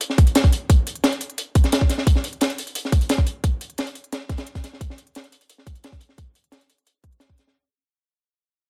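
A tight, up-front electronic kick drives this uplifting drum and bass clip, joining at 0.2 seconds a crunchy, high-pass-filtered breakbeat kit that plays from the start, whose high-tuned snare and hi-hat sound saturated and gritty, with a dark, rolled-off top and a small-room character. A quieter layer of crisp electronic hi-hats sits beneath, and both the kick and these hats carry a tape-warm tone and the air of a large room. The straight 4/4 groove stays fairly dry and fades out across its whole length.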